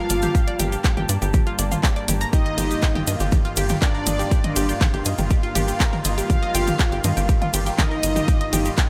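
A dry, close-sounding excerpt of dark, hypnotic melodic techno, where a punchy, up-front electronic kick and a tight, nasal sequencer bass drive beneath a thick, detuned unison lead joined by an airy soft supersaw on a second line, while veiled, muted strings sustain Gmadd9 and Ebsus2/G chords, a round, chorused analog pluck plays arpeggios, and a faint drone shifts its overtones; a techno kit of handclaps, hi-hat, ride and toms, a gritty, very quiet breakbeat-style kit and a grainy cabasa in the background fill out the rhythm, with sidechain pumping on the lead, supersaw, strings, pluck and bass.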